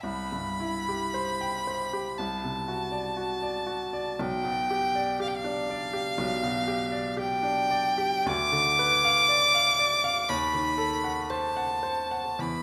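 A clear, close violin carries the solemn, yearning melody high in its range with smooth vibrato, up front in this romantic classical duo at a slow 58 BPM with a freely flowing rubato. Beneath it, a bright, brilliant baby grand piano supplies intimate accompaniment with short sustain and audible action noise, moving from C through D7/C and G7/B toward diminished harmonies by 10.3 seconds. A moderate recital hall reverb surrounds both instruments in this short passage cut from a longer piece.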